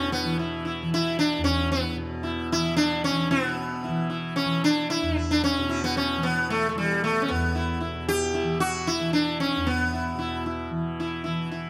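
Close, detailed microphones put both instruments up front in a moderate, stage-like reverb, lending this fragment of an Indian classical piece an introspective, solemn air. In a three-beat metre, a bright, plectrum-plucked sitar carries the melody with a round, buzzing tone haloed by shimmering sympathetic strings, moving into a new passage at 3.3 seconds. Beneath it, a softly plucked tanpura holds a warm, low drone throughout.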